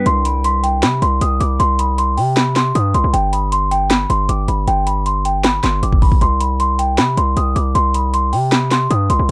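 A worn celesta carries the melody from the very start, its bell-like, slightly out-of-tune tone dark and delicate, trailed by tape echo high in its register. This brooding, melancholic trap excerpt moves in a half-time feel, with a distorted 808-style bass arriving at 0.1 seconds, heavy and saturated with a fast attack, a noise layer and a decaying tail. The trap drum kit enters at the same moment, up front with a knocking kick, sharp snare, handclaps and metallic hats, all coloured by vintage 12-bit sampler grit. The harmony moves from C5 to Gadd11 at 3.1 seconds and back to C5 at 6.2 seconds. The sound is dry and gritty, like a hardware recording with little reverb, and the piece is cut from a longer work.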